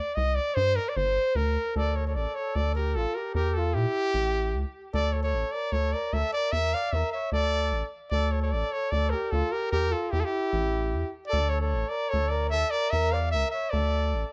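Fiery and bittersweet, this Balkan folk piece, cut from a longer work, moves at 150 BPM in a swung 2/4 in D harmonic minor, with a clear, up-front cornet carrying the melody with light vibrato and tape echo over a rubbery, bouncy square-wave bass with a dark, resonant pluck, while a mellow, distant flugelhorn enters at 1.8 seconds with a second line, all set in light reverb.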